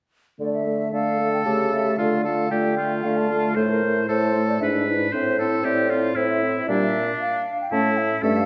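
Dramatic and stormy, this quick, rubato classical-period movement for wind quintet in D minor and 3/4 at 115 BPM sets a mellow, airy flute melody with vibrato and a soft attack over a clear French horn, a dark clarinet tucked in the background and a smooth-topped bassoon bass, while a bright, up-front oboe joins with a second line at 0.9 seconds, all heard from further back in a wet recital hall in a short section cut from a longer piece.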